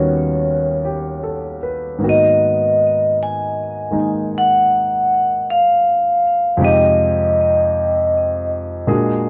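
A metallic, ringing vibraphone played with medium hard mallets carries the melody up front, its slow motor vibrato and tape echo giving a band-limited, vintage color as it moves between Db5 and Ab5 until 8.5 seconds. Beneath it, a warm concert grand piano plays smooth accompaniment with deep bass through Eb7alt, Abm9 and Fm7 chords, continuing to 9.3 seconds. This smoky, intimate jazz ballad excerpt swings gently at 52 BPM in 4/4, captured in a dry, close 1970s-style studio sound with light reverb.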